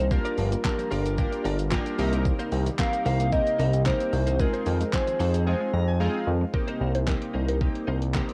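Driving and bittersweet, this dance-pop excerpt in C minor moves at 112 BPM over a Gm7, Cm7 and Fm7 progression. A fat, sawtooth analog bass with sidechain pumping and an overdriven, knocking pop drum kit sit up front, while glossy, chorused retro synth keys, a smooth analog pad, a clean direct-recorded electric guitar riff, woody mallet-like synth arpeggios and a very quiet group handclap fill in behind. A hollow, clarinet-like synth lead with vibrato carries the melody until 6.0 seconds, the synth keys fill a brief gap from 5.5 seconds, and at 6.5 seconds a round, phased mallet-like pluck takes over the tune, all with a lo-fi cassette tinge.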